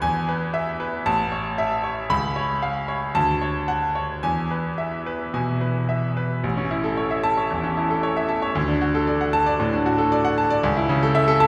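Rubato phrasing stretches and pulls against a 4/4 metre in this classical virtuoso piano study, cut from a longer piece, and its mood is sparkling and heroic. A single grand piano carries the whole performance from 0.0 to 11.5 seconds, ranging from A1 up to B5 with a brilliant, bright tone and long sustain. The instrument sits present and up front, with an intimate closeness where the action noise of the keys is audible. The opening passage moves through E, A, C#7 and Dmaj7 before returning to E. At 6.4 seconds a new section begins on A, passes through D and settles on A/C#. A wet recital hall reverb surrounds the playing, heard from further back in the room, lending the sound a spacious glow.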